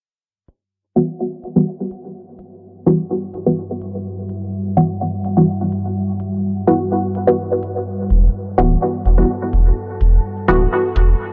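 A steady, straight 4/4 pulse from a tape-warmed analog hi-hat, re-recorded in a small room, ticks softly underneath this hypnotic, meditative dub techno passage cut from a longer piece. From 1.0 seconds a muted, detuned sawtooth chord stab sits up front, its short, fast-attack hits coloured by chorus, phaser and dub echo as a filter sweep runs across it. A deep, moody ambient pad built from unison sawtooth and sine layers with a sub octave fades in slowly at 3.1 seconds, holding long chords in a dark wash of chorus and its own reverb while the filter sweeps over it too. A round, sine sub bass arrives at 8.1 seconds, sitting prominent and warm beneath the harmony, which rests on a single Emadd9 chord throughout. The whole recording has a dry, gritty hardware character, with light reverb and a low-pass filter shading its top end.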